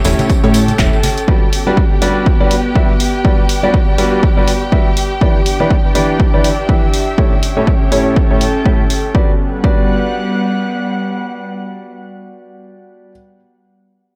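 An echo-heavy mix bathed in moderate spring reverb opens this euphoric, joyful slice of piano house, cut from a longer piece and moving at 122 BPM in 4/4 with a swung sixteenth feel in G lydian. A smooth, vintage grand piano carries the riff throughout, pumping against the kick, softened by a low-pass filter and trailed by analog delay, with a filter sweep running across it until 9.1 seconds. Beneath it, a lush, veiled con sordino violin section holds sustained chords with vibrato, while an airy, breathy pad with chorus adds a detuned, slow-blooming layer, both breathing with sidechain pumping. Bright, dry tambourine and congas sound only at the very start, and a funky, plucky analog bass with ring-modulated bite makes just a brief appearance near the top. Tape-warm drum machine handclaps and hi-hat with analog delay enter at 0.1 seconds, and an overdriven, layered electronic kick follows up front from 0.3 to 9.8 seconds. 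The harmony moves through A7, Gmaj7, Em7 and back to A7, before a closing section from 9.1 seconds rests on Gmaj7, with the piano and pad carrying on.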